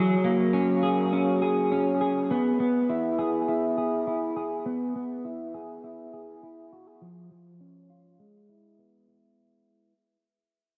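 Wrapped in moderate spring reverb and heavy echo, the recording carries a soft cassette-tape haze over this floating, dreamy dream pop fragment, cut from a longer piece. A single electric guitar, up front and compressed, plays picked arpeggios with a slightly broken-up edge, colored by analog chorus, a low-pass filter and dub echo, while a filter sweep runs across it. Moving through F#add9, E and C#/E# before settling back on E, the passage fades out over its roughly 9.4 seconds.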